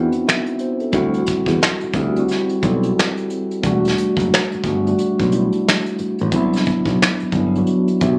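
Smooth and late-night, this short R&B and neo-soul excerpt moves at an unhurried 89 BPM in 4/4, with a swung sixteenth-note feel. A mellow tine electric piano sits up front carrying the accompaniment, its clean tone moving through rich chords from Am69 to D9sus4, Em9 and Cmaj9. Beneath it, a bright, growly fingered electric bass holds down the low end, while a vintage brush drum kit with a punchy kick, medium-tuned snare, hi-hat and finger snaps enters at 0.1 seconds, its top rolled off for a soft, rounded edge. The electric piano closes with a brief fill at 7.7 seconds as the cut ends at 8.2 seconds. The sound has the intimate feel of a phone recording in a club room, with moderate reverb and compression.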